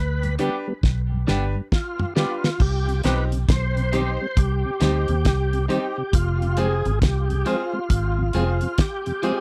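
A damped 70s drum kit sits up front with a fat snare and tight kick, playing a fill from 0.8 to 2.6 seconds in this laid-back, serious roots reggae passage at 68 BPM in C harmonic minor, cut from a longer piece. A dark, foam-muted fingered electric bass anchors the low end while a gritty, overdriven tonewheel organ carries the melody with key click, chorus vibrato, slow rotary speaker and tape echo, over a mellow second organ with its own slow rotary. A woody, bright upright piano adds short stabs and a clean electric guitar with tape echo sits in the background, all captured in a dry, close 1970s-style studio sound as the harmony moves from G to Cm at 2.6 seconds and Fm at 6.1 seconds.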